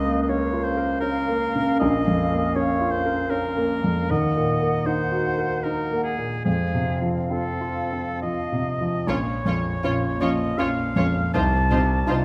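In this passionate, tragic fragment of a romantic movement in 3/4 with a rubato feel, a clear, up-front concert grand piano with deep bass carries the melody over a close-miked oboe with vibrato, a soft-attack, pure flute section, a very quiet dark clarinet and a distant, roomy bassoon; the winds under the piano fall away at 8.7 seconds, and from 9.1 seconds a floating, smooth-topped studio violin section takes up the melody beside the piano and oboe, joined by a background symphonic violin section, a lush, woody viola section with vibrato, and soft-attack cello and double bass sections playing sul tasto, all within a wet recital-hall reverb.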